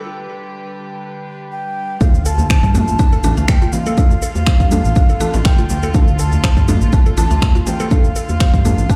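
A breathy bamboo bansuri carries the melody from 1.5 seconds in this earthy afro house piece at 122 BPM in D dorian, floating over distant, reedy chamber strings and a woody mallet-like synth pluck arpeggio under a filter sweep, until the drop at 2.0 seconds brings in a punchy overdriven electronic kick, a house kit of finger snaps, shaker and toms, a tight cracking djembe, soft chorused chord stabs with phaser, and a deep, rumbling detuned saw bass, with ringing high-tuned congas joining in the background at 2.4 seconds, all set in a bare room with large studio reverb.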